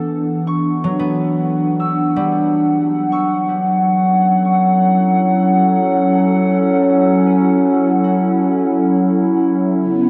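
A warbling, tape-like pad and a concert harp open this short ambient excerpt together, settling into a melancholic, reflective mood over a straight, unhurried pulse. The pad sits up front, holding sustained chords with a slow attack and long release; its detuned, nostalgic lo-fi character is coloured by chorus and its own reverb, while a filter sweep moves across it until 9.8 seconds. Behind it, the harp plays fingerpicked arpeggios with an acoustic, ringing tone, set back in the mix and trailed by tape echo as it fades out over the same stretch. The harmony moves from Em7 to F#m7 at 2.7 seconds. At 9.9 seconds a resonant, overtone-sweeping drone appears on a single B3, its moving notch shifting the overtones under chorus and reverb. The whole production is dark and warm, bathed in a huge, wet ambient reverb with an 8.8-second decay.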